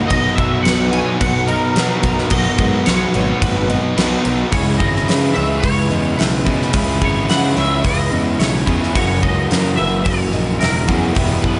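This hazy, blissful shoegaze and dream pop excerpt opens on layered guitars. A twangy, scooped electric guitar carries the melody through ensemble chorus and analog delay, while a shimmering, octave-doubled twelve-string acoustic plays picked arpeggios in the background with subtle chorus and the same delay. Beneath them, a hollow-body semi-hollow guitar with overdrive and reverse reverb and a dark, thick fuzz guitar with distortion and subtle chorus both play riffs. At 0.1 s a warm, overdriven fuzz bass and a huge acoustic arena drum kit join, the kit sitting up front with a fat snare, punchy kick, crash and hi-hat in a big-room sound. At a straight 108 BPM in 4/4, the harmony rests on Bmaj7 before moving to C#m7 at 4.5 s and F#7 at 8.9 s, all wrapped in light reverb and small room ambience with a softened top end.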